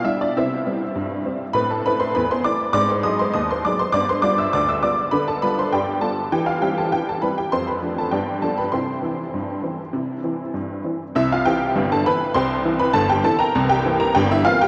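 Drenched in a huge, wet reverb that hangs for seconds in a vast, echoing space, this excerpt of playful, lively ragtime spotlights a solo honky-tonk upright piano, detuned and jangly with a bright, vintage edge, sitting up front. At 100 BPM in a straight 2/4, the piano ranges from deep bass to high treble in C major, moving from C through Am, Ab7 and G7 before settling back on C. A new section begins at 11.2 s and turns toward C7 near the close at 14.7 s.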